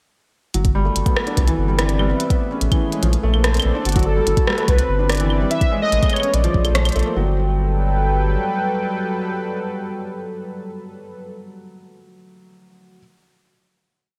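A bright, 1980s-style digital sheen and a lush hall reverb frame this short, glitchy and intricate IDM piece in G major, moving at 145 BPM in a straight 4/4. A felt-muted upright piano, soft and intimate, carries a 12-step arpeggiated loop that drifts against the bar through a digital delay. Beneath it, a round, dark analog bass sits up front with a dub-style line, while a smooth analog pad with chorus holds slowly shifting maj9 chords. The electronic kick plays a deep, broken pattern in a small room, and a glitched kit of claves, clicky closed hats and rim clicks keeps the beat ever-changing under gated reverb. At 3.9 seconds a velvety, full-bodied synth lead with detuned unison, vibrato, chorus, 12-bit sampler grit and delay enters with arching motif phrases. The groove gives way at 7.2 seconds to a final Gmaj9 chord. The lead and pad end at 11.2 seconds, and the piano carries on until 13.0 seconds.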